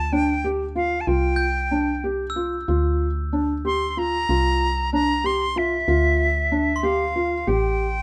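A bright, reedy silver flute with airy vibrato carries the melody up front in this restless, pensive piece of contemporary chamber music, cut from a longer work in D minor and moving in an uneven 5/8 at 188 BPM (eighths). Beneath it, a felt-muted upright piano plays intimate, boxy arpeggios with audible action noise, while a woody, round FM bass anchors the harmony through chords such as Dm, Csus4, Dm7 and Am7. A dry, sparkling glockenspiel struck with brass mallets adds bell-like ringing texture at 1.4 s and again at 6.8 s, all set in light reverb with close, detailed miking.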